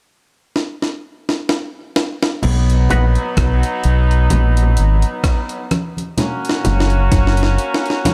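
A gritty, compressed breakbeat drum kit with a thumpy kick and high-tuned snare opens this laid-back, spacious dub reggae excerpt at 64 BPM with a fill from 0.6 s; at 2.4 s a dark, round fingered electric bass arrives up front under a distant horn section with light vibrato and tape echo, ringing congas sit in the background, and a clean envelope-filtered electric guitar appears briefly at 2.9 s, over a dry, echo-heavy mix moving from B to F#.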